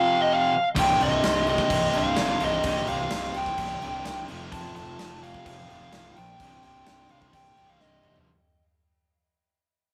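A straight 4/4 pulse at 128 BPM drives this menacing hard rock excerpt in C minor, which opens with a biting, overdriven lead guitar melody and a tight, bright, distorted riff guitar before a very quiet double-tracked distorted guitar, a hollow-bodied semi-hollow guitar with spring reverb, a fuzzy, punchy picked bass and a big, airy rock drum kit all enter at 0.8 s. The riff guitars churn through Cm and F over the kit's punchy kick, medium-tuned snare and bright cymbals, with analog delay trailing the up-front lead. A drum fill arrives at 7.8 s as the whole rough, saturated rehearsal-room take fades out.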